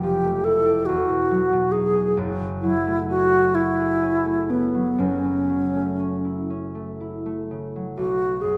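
A hollow, pure-toned alto flute with gentle vibrato and soft attacks sings the melody up front in this hazy, mysterious impressionist classical duo, floating in rubato 6/8 at roughly 39-47 BPM over a fingerpicked concert harp whose ringing, mellow chords drift from Fmaj9 and Emaj9 into F#m9 and settle on B9sus4 at 8.0 seconds, all bathed in the lush reverb of a recital hall.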